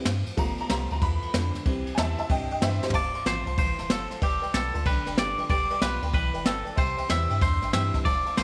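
Light studio reverb frames this rollicking, retro rockabilly excerpt in C major at 188 BPM with a swung feel. A jangly, boxy tack piano opens with a honky-tonk solo, backed by a background dreadnought acoustic guitar with bright fresh strings, a deep, smooth sine sub bass and an up-front brushed drum kit with dark cymbals and a boomy kick. After a drum fill at 2.8 seconds, a twangy, compressed electric guitar treated with spring reverb and tape echo takes the melody from 3.0 seconds over F, G7 and C chords.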